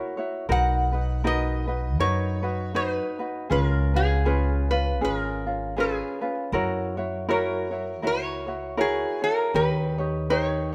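Dreamy and sunny, this Hawaiian piece sways at 80 BPM in B major with a gentle swing, moving through Bmaj7, C#7, F#7 and D#7. A metal-body resonator slide guitar sings the melody up front, its slide tone nasal and metallic under fingerpicks, while a bright, light ukulele is fingerpicked alongside it from the start. A woody pizzicato upright bass on steel strings joins at 0.5 seconds, all captured by close, detailed microphones with light reverb in this fragment of a longer piece.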